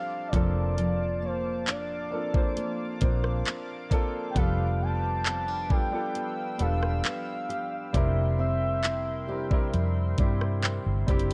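A smooth, gliding sine lead with chorus, vibrato and digital delay opens this dreamy, romantic contemporary R&B excerpt over a polished grand piano, a shimmering retro pulse-width pad and a dark, full-bodied fingerpicked acoustic guitar playing arpeggios. At 0.3 seconds a round, punchy foam-muted electric bass and an up-front electronic kit of knocking kick, hi-hat, handclaps and rim click join in under chords moving from Bbmaj7/F through G7/F to C7/F. The lead drops out at 9.7 seconds, and the dry mix carries the worn, warbling pitch drift of old cassette tape.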